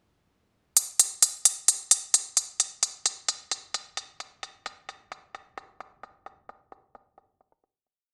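Hip hop in a trap style, this short, eerie and melancholic piece moves in a half-time feel. The only part is an electronic hi-hat, crisp and overdriven, sitting up front in the mix from 0.8 seconds. Its pattern carries a half-time trap beat with fast hi-hat rolls, giving the sparse arrangement a restless pulse. The whole track plays as a breakdown, with a filter sweep running through it and a low-pass filter shaping the dry, close sound. A fade-out begins at 6.3 seconds and carries the piece to its end at 8.1 seconds.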